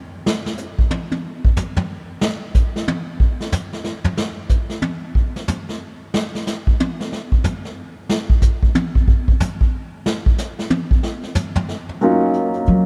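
A vintage brush drum kit solos until 12.0 seconds in this cool, late-night jazz piano trio excerpt in Eb minor at 184 BPM in a swung 3/4, its punchy kick, medium-tuned snare and rolled-off top sitting up front in a vast, echoing space, before a polished, present grand piano enters on an Ebm9 chord and a woody pizzicato upright bass joins at 12.7 seconds.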